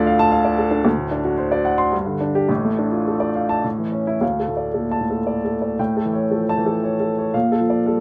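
A woody, intimate upright piano, its action noise audible and its notes ringing with long sustain up front in light reverb, plays a stormy, bittersweet romantic character piece in D minor, moving in a rubato 3/4 at around 103-116 BPM through chords from D minor and D7 toward A7 before reaching a Bbmaj7 near 7.3 seconds in this brief excerpt from a longer work.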